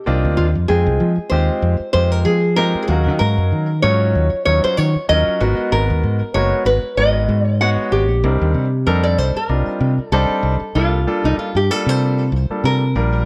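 Electric jazz fusion at 95 BPM in 4/4 with a light sixteenth-note swing, this intense, nocturnal excerpt moves through minor ninth chords before settling on a C13sus4 near 10.8 seconds. A fingerpicked nylon-string guitar carries the melody up front with a classical tone and audible finger squeak, while a clear grand piano with long sustain accompanies and a direct, up-front fingered electric bass anchors the low end. Light reverb gives the trio a small-room ambience.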